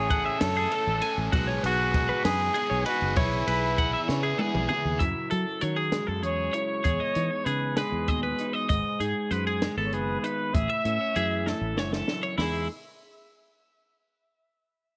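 A slow 6/8 lilt at 65 BPM in dotted quarters carries this bright, wistful stretch of math rock and midwest emo in E major, cut from a longer piece. A breathy, intimate trumpet with tape echo and vibrato sings the melody over bright, twangy twelve-string arpeggios, a round foam-muted fingered bass and a compact cocktail kit with a punchy kick, high-tuned snare and dark cymbals, while a double-tracked overdriven guitar riff with phaser gives way at 5.0 seconds to a slightly broken-up, lo-fi guitar through a small old amp. Drum fills close each phrase, the harmony drifts through Amaj7, G#m7 and F#m9 colours before settling on Emaj7, and light reverb lends a small-room feel.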